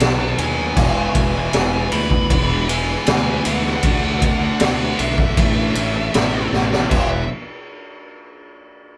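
A raw, up-front garage drum kit drives a straight 78 BPM in 4/4, its high-tuned snare, boomy kick, crash and ride sounding gritty and saturated with a rolled-off top, and a fill at 6.5 s leads into a new section at 6.9 s. Beneath a dark, distorted lead guitar melody in E mixolydian, a punchy overdriven fuzz bass and a wall of quieter riffing guitars (two bright high-gain parts, one double-tracked, plus a thick, dark fuzz guitar) move through B, E, Dadd9 and A. A soft, flute-like tonewheel organ through a rotary speaker holds faint sustained chords in this restless, anthemic alternative rock clip, recorded as a live band in one room with moderate ambience.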